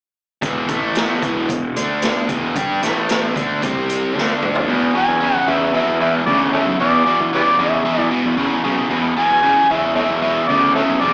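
An amplified, overdriven harmonica takes the solo spotlight from 5.0 seconds, its gritty jazz-style lines full of tongue slaps, scooped notes and light vibrato, set in a plate reverb. Beneath it, this swaggering blues rock power trio cut with a southern rock edge rides a straight 4/4 groove. A biting, double-tracked electric guitar sits up front with a picked riff moving through power chords on E, A, D and C, touched with slapback echo. A growly fuzz bass, bright and overdriven, runs under the guitar throughout. The raw garage drum kit, with its punchy kick, medium-tuned snare and rolled-off top, drives the opening section and ends with a fill that closes at 4.7 seconds. The whole passage, cut from a longer piece, sounds like a live club gig heard through the venue's PA, with a small-speaker tone and a light club reverb.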